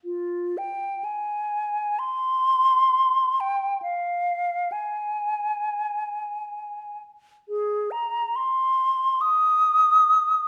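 A solo silver concert flute opens at once with a mellow, hollow tone, carrying a mournful, yearning classical line in free time. It is the only voice throughout this short 10.5-second fragment of a longer expressive piece, ranging from F4 up to Eb6. The playing is tongued and shaded with vibrato, and the pure metallic sound sits up front. A moderate recital hall reverb, with a decay of about 1.3 seconds, gives the notes a gentle bloom around them. The instrument is tuned to A4 = 442 Hz.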